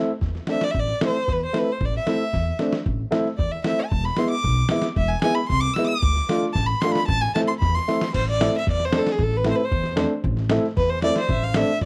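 A rich, focused violin with vibrato leads this soulful, bittersweet klezmer excerpt in A harmonic minor, playing solo up front over the first 8.2 seconds at 114 BPM in a straight 2/4. A dark, woody upright piano with long sustain and a thumpy pizzicato upright bass on gut strings support it, while a gritty, pitched-down sampler-style drum kit with a compressed, tape-warm sound adds kick, snare and crash, with a fill at 7.9 seconds. The chords move from Am to E to Dm and back to Am in a dry, close 1970s-style studio sound with small room reverb.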